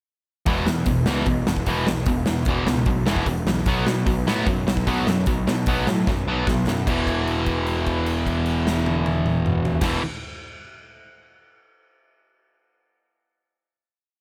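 A short, rowdy punk rock piece at 150 BPM kicks off at 0.5 seconds with the whole band at once: two overdriven electric guitars chugging palm-muted eighth notes, one up front and one sitting in the background, over a fuzz-drenched picked bass that growls out driving eighth notes. A big rock drum kit, acoustic and polished in an airy, big room, pushes a two-step groove with a punchy kick, a medium-tuned snare and bright cymbals. The verse rides an E5 power chord before shifting to B5, keeping the energy high and straight in 4/4. A drum fill from 6.1 to 6.9 seconds sets up the close, where the band lands on a final E5 chord and holds it out until nearly the end. Light reverb gives the energetic mix a touch of space.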